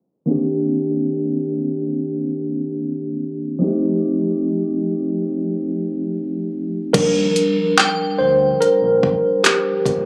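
A clean, up-front tine electric piano opens this short contemporary R&B cut at 0.3 s, moving from Cm7 to F7 beneath a filter sweep that carries through the opening section. At 6.9 s the music shifts to a rootless Ebmaj9, and the electric piano takes a solo while a smooth R&B drum kit and a mellow synth bass arrive together. The drums are electronic and produced, with a soft kick, warm hi-hats, handclaps and a crash cymbal, all overdriven and re-recorded in a small room so they sit close to the listener. The bass blends sawtooth and triangle tones into a rounded, sustained low end. At 7.8 s a crystalline FM synth bell rings out briefly on a high G, bright and decaying, colored by chorus, phaser and tape echo. The whole piece sounds as if captured on a phone in the room, with club reverb, compression and a low-pass filter that soften its edges and give it a longing, sensual mood.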